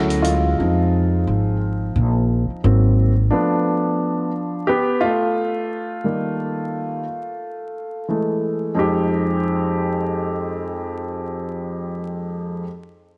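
A dreamy mix soaked in plate reverb and vinyl crackle frames this nocturnal, smoky hip hop fragment at 88 BPM in F minor with swung sixteenths, where a warm baby grand piano with long sustain takes an up-front solo over lush extended chords, a woody pizzicato upright bass plays alongside it from the start only until 3.3 seconds, and the harmony settles on Fm9 at 8.8 seconds.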